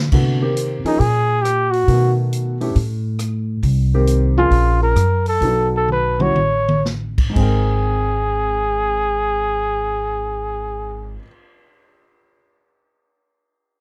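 A swung 4/4 pulse eases into a slowdown between 3.6 and 7.4 seconds, with a drum fill at 5.9 seconds, in this relaxed, sophisticated small-group jazz excerpt, where a woody, up-front pizzicato upright bass and an intimate concert grand piano with audible action noise play alongside a natural-sounding kit with a punchy kick, while a dark, breathy trumpet with vibrato and scooped notes carries the melody from 0.9 seconds in a lightly reverberant, dark and warm production.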